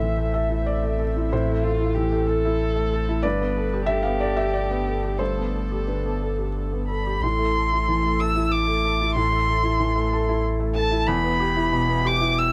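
From the first moment, a veiled, con sordino violin sings a melancholic, reflective melody with vibrato and portamento over a mellow felt-muted upright piano whose action noise is audible, while a silky analog string pad with ensemble chorus sits in the background and a clean, deep sine sub bass anchors this rubato neoclassical piece in A minor at 92 BPM in 3/4, captured with close, detailed microphones in a dry, intimate sound and cut from a longer work.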